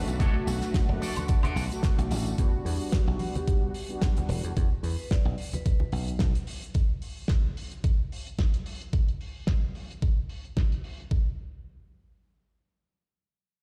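A cosmic, sleek nu-disco groove with a swung sixteenth feel opens on a drop: dark, detuned synth brass with chorus and tape echo and lush, distant bowed strings with sidechain pumping sit over a bright, punchy thumbed slap bass, a knocking, overdriven electronic kick up front and a damped 70s kit of hi-hat, snare, tambourine and woodblock with a rolled-off top. A clean, twangy envelope-filtered guitar riff appears briefly near the start, hard-handed congas come in at 1.0 s, and a metallic, ringing vibraphone melody with tape echo enters in the background at 3.4 s. The harmony moves from Bm7 to Em7 and then falls away at 6.7 s, leaving only the kick and kit in a large studio reverb that sounds like a big sound system in a bare room.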